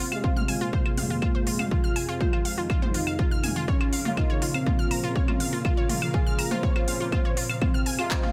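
A heavy, up-front electronic kick anchors this dark, melancholic melodic techno build-up at 122 BPM in F minor, beside a tape-warm techno kit of claves, handclaps, smooth hi-hats and toms, with both re-recorded in a small room. A thick, detuned sawtooth unison lead with vibrato carries the melody over bright, filter-swept unison pluck arpeggios and fat, nasal analog brass stabs, all pumping against the kick and trailed by delay. Beneath them, an evolving wavetable pad morphs in the background through ensemble chorus, phaser and 12-bit sampler grit, moving from Fm to Bbm at 3.7 seconds and back at 7.6 seconds, with the whole passage set in light digital ambience.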